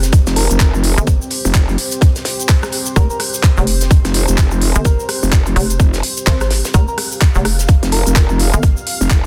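A dark, detuned analog pad, a hollow knocking FM bass and a bed of drums and shaker open this bouncy, swaggering bass house excerpt, with a tight, tape-warm electronic kick landing up front at 0.1 seconds. At 0.3 seconds a growling, saturated bass joins, wobbling through a formant filter with chorus and overdrive, and pumping against the kick alongside the punchy FM bass and the moody, evolving pad. A garage kit adds crisp hats, handclaps and rim clicks with a large-room sheen, while a very quiet, dry 70s kit contributes a fat snare and hi-hat, and a grainy tube shaker sits in the background. A round, gentle, keys-like FM lead enters at 0.4 seconds, kept in the background with chorus and delay. The 16th-note swing gives the groove its strut, and the whole clip is cut from a longer piece under a dense, heavily limited modern master with digital ambience.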